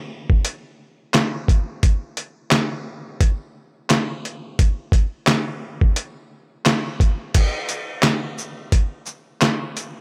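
Reflective yet tough, this hip hop fragment in 4/4 with swung sixteenths is carried entirely by a lo-fi sampler-style drum kit that enters at 0.3 s and runs to 9.9 s, placed up front with a thumpy kick, fat snare, hi-hat, shaker, handclaps and crash cymbal, its compressed, pitched-down, muffled sound overdriven and re-recorded in a small room, all set in light reverb as it moves into a new section at 7.3 s.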